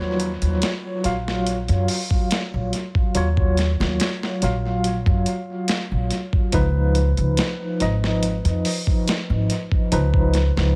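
A woody, pizzicato upright bass sits up front in this smoky, dark trip hop passage in Eb minor, moving at a straight 71 BPM in 4/4 with A4 tuned to 444 Hz. A clean tine electric piano played through its built-in speakers adds tremolo and tape echo over chords that shift from Ebm9 to Db9 at 6.5 seconds. A gritty, compressed sampler-style drum kit with a thumpy kick, medium-tuned snare and hi-hat enters at 0.2 seconds, overdriven and treated with studio reverb and tape echo, all within an echo-heavy digital ambience in this short section cut from a longer piece.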